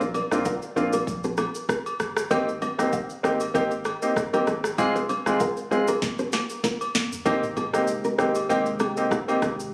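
A lilting 97 BPM afrobeats groove with a light sixteenth-note swing drives this joyful, sunny Ab major excerpt cut from a longer piece, as a produced afro-pop kit with deep kick and sharp snare plays up front beside a clear, present grand piano, while a full-bodied fingerpicked nylon-string guitar riff trails tape echo, a punchy sine sub bass sits in the background, agogo bells and woodblock add acoustic colour, a drum fill runs from 6.0 to 7.3 seconds, and a smooth detuned sawtooth pad with chorus enters at 7.3 seconds, all within a lush hall reverb heard through a phone recording in a small room.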